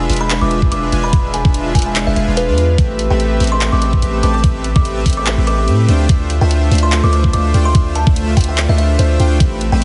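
A soft, detuned supersaw riff and a deep, sine-toned 808-style bass open this dreamy, lush future bass excerpt at 145 BPM in a swung half-time feel, both pumping with sidechain compression, as a dubstep kit with bright hats and handclaps, a woody, ringing kalimba melody with dub echo, and a knocking, up-front electronic kick entering at 0.6 seconds move through E7b9, Am9 and Dm9 under light reverb and a heavily compressed, radio-like sound.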